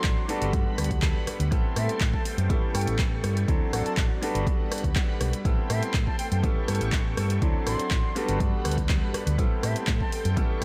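An up-front, punchy, overdriven electronic kick drives this nostalgic, funky filtered disco house excerpt at 122 BPM in A dorian, joined by an overdriven analog drum machine whose handclaps, rim clicks and sidechain-pumped hi-hats carry a large-room sheen. A dark, round, amped hollow-body bass with tube saturation and a brilliant grand piano through a phaser work over a Gmaj7, Am7, A7, D7 cycle, while a lush, vintage sawtooth string machine with ensemble chorus and a slow attack holds sustained chords, with all three parts pumping against the kick. Set in the background, an airy silver flute with vibrato and tongued notes carries the melody through analog delay, all within light reverb.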